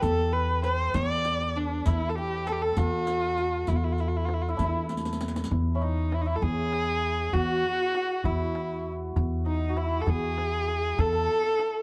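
A clear, focused kamancheh sings the melody up front, its boxy bowed tone shaped by vibrato and portamento in this hypnotic, soulful Persian modal ensemble piece, heard as an excerpt from a longer work in 6/8. Beneath it, a bright hammered santur carries a shimmering, ringing second line. A woody pizzicato upright bass on gut strings sits up front, thumpy and holding a single low note. In the background, a deep tombak stays close and dry throughout, while a riq adds vintage, band-limited jingles played with soft hands. A drum fill at 4.9 seconds leads into a new section at 5.5 seconds, where the riq drops out and the mode shifts, all set in a dark, warm production with light reverb.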